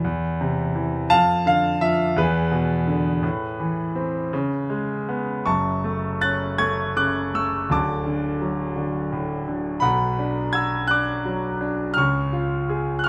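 A clear concert grand piano opens this short passage of lyrical classical solo piano, sounding up front and polished. It moves at an unhurried 56 beats per minute in 6/8 with a free, rubato feel, giving the music a peaceful, gently warm mood. The opening harmonies drift through colourful chords such as Cmaj7#5/E, E7 and Amadd9 before the music settles into F# minor at 5.5 seconds. From there the progression moves through F#m, D, Bm and C#. The piano spans a generous range from D1 up to A6, with a deep bass and long sustain that ring into a light reverb. The fragment, cut from a longer piece, ends at 13.1 seconds.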